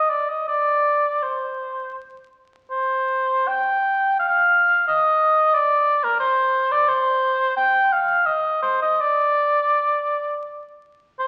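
A lone oboe carries this grave, flowing classical fantasia in a baroque style, sitting up front with a warm, punchy tone and vibrato. Set in C minor and 3/4 time, it moves with a free, rubato feel that drifts between roughly 77 and 91 BPM. The line stays in a compact span from Bb4 to G5, with the opening idea giving way to a new passage at 2.7 seconds that continues until the fragment breaks off at 11.3 seconds. A wet recital hall reverb surrounds the instrument. The sound has the character of a very old 78 rpm record, with vinyl crackle running beneath the solo.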